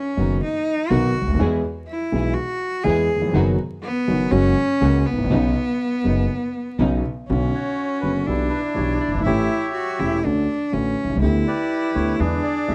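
A dry, close 1970s-style studio sound in a small room, touched by vinyl crackle, frames this dramatic, melancholic rubato tango cut from a longer piece. A biting, intense solo cello with light vibrato and an airy bow sits up front, over an intimate grand piano with audible action noise and deep bass, a woody pizzicato upright bass, and distant, lush symphonic strings adding stabs in the background until 7.0 seconds. At 7.5 seconds a reedy, mid-forward bandoneon takes the melody as the harmony darkens into minor.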